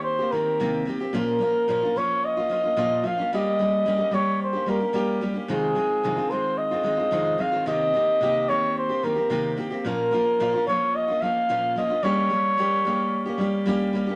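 A mellow flugelhorn carries the melody with a light vibrato and a classical poise, sounding distant and roomy even as it sits up front in this short excerpt cut from a longer acoustic folk piece. Beneath it, a picked steel-string acoustic guitar supplies the accompaniment with a warm, woody, full-bodied dreadnought tone and the character of old strings. The mood is reflective and melancholic, moving at a steady 110 BPM in 4/4 with a straight feel, and the tuning sits slightly high at A4 = 443 Hz. The harmony circles through Cm7, Bbm, Gdim and Fm7 before returning to Cm7, Bbm and Gdim. A wet studio reverb surrounds the pair, and the horn stops at 13.7 seconds while the guitar carries on to the close at 14.2 seconds.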